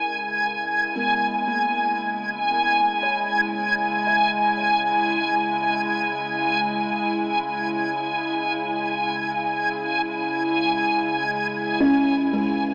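A slow, straight 4/4 pulse at 58 BPM carries this melancholic, reflective ambient excerpt in C# dorian, built on a sustained C#m7 chord that gives way to silence of harmony at 11.8 seconds. An evolving wavetable pad with a morphing, warbling, vintage shimmer and a buzzing, woody kalimba playing soft arpeggios both fade in across the full 12.7 seconds, while a reversed, detuned granular texture sits up front on a single high G#5, swelling dreamily. The whole excerpt is drenched in a huge, wet reverb with a long tail and filtered through an AM-radio tone.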